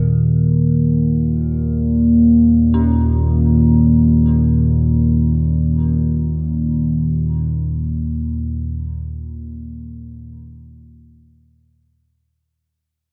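An up-front analog drone of evolving sawtooth and pulse-wave tones with chorus and a filter sweep anchors this dark, cavernous ambient drone fragment in free time, while an eerie, inharmonic FM synth bell fades in with chorused, phased arpeggios trailing into diffuse delay until 8.8 s, and a metallic bronze singing bowl rings with slow beating in the background as it fades out, the whole set in a cathedral reverb with a cassette tape character before the recording fades out from 7.1 s.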